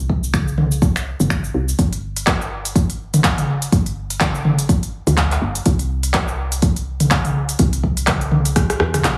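A woody, round FM bass opens this earthy, driving afro house excerpt, its soft, dark notes striking with a fast attack, then decaying and pumping against the beat. Almost at once a deep electronic kick joins, followed by an up-front afro-pop drum kit of crisp hi-hats, cabasa, finger snaps, handclaps, rim clicks and toms on a swung sixteenth-note feel, with both drum parts carrying a tape-warm tint from being re-recorded in a small room. A drum fill arrives at 8.6 seconds, and the track sits in light reverb with a heavily compressed, radio-like sound.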